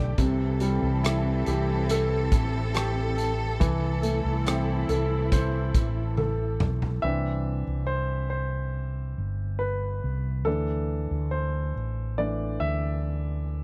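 A small room ambience surrounds this close, up-front studio recording of a tender, hopeful pop ballad in C major, taken from a longer piece and moving at a straight 70 BPM in 4/4. A clear, polished baby grand piano opens with a fill and carries the accompaniment throughout. Beneath it, a mellow fretless electric bass sits low with a dark, round, amped tone. A lush, woody string section holds bowed chords with vibrato, and a loose acoustic indie drum kit, with its punchy kick, hi-hat, rim click and toms, brings a pumping room sound. The harmony moves from C6 to Am, and after a drum fill at 6.2 seconds the strings and drums drop out at 7.0 seconds, leaving the present-sounding piano to take a solo over the bass through Cadd9 and Dsus2 chords.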